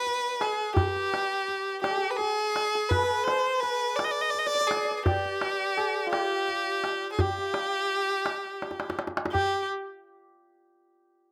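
Festive and passionate, this short passage from a longer Persian modal ensemble piece moves at a stately 56 BPM in a straight 6/8, set in G dastgah homayun with tuning at A4 = 438 Hz. A clear, focused violin carries the melody between G4 and Eb5, bowed by one player with vibrato and sitting close and up front. Beneath it, a bright hammered santur plays a second line between F4 and D5, its shimmering, ringing tone given a slapback echo. The tombak joins at 0.1 seconds with a tight, acoustic sound from soft hands, placed up front with a small-room character, and a drum fill from 8.6 to 9.3 seconds marks the opening section giving way to a new one. The whole is recorded outdoors with light reverb, and all three parts stop at 9.7 seconds.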